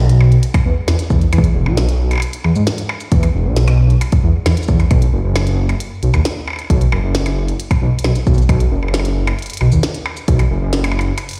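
Heard through a big sound system in a bare, stone-walled room, this short IDM excerpt at 134 BPM in a straight 4/4 has a playful yet wistful air. A dark, detuned saw bass rumbles up front from the opening, its deep, beating unison tone sustained and mellow, while a glitchy drum kit of tiny snare, clicky hats, shaker and percussion blips carries a small-room ambience. A deep, tape-warm electronic kick sits up front from 0.5 s to 10.4 s before a break arrives at 11.2 s.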